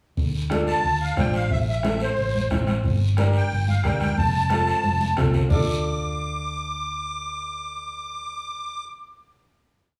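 A reedy, shimmering musette accordion sits close and up front, carrying a motif-based melody of call phrases over a danceable, passionate cumbia that ends on a final chord from 5.5 seconds. Beneath it, a dark, round hollow-body electric bass plays a cumbia figure while a woody upright piano adds short rhythmic triad chords. A vintage-sounding bombo with kick and rim, soft background congas and a raspy guiro drive the groove through a drum fill at 4.8 seconds, all captured as a band playing live in one room with a lush studio reverb.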